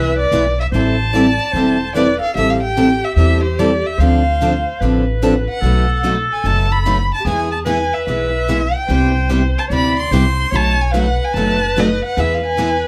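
A swung 4/4 pulse at 147 BPM drives this fiery, virtuosic jazz manouche passage in A minor, tuned slightly flat to A4 = 437 Hz and cut from a longer piece. Up front, a single bowed violin carries the melody with an expressive, smooth-topped tone, vibrato and portamento, while a punchy, forceful clarinet plays a second line in jazz style from a roomy distance. Two picked steel-string acoustic guitars, one bright and concert-toned and the other a fresh-stringed parlour guitar in the background, provide accompaniment alongside a woody, thumpy pizzicato upright bass on gut strings, all set in a wet studio ambience heard from further back as the chords move from Am7 through Dm7 and B7 to E.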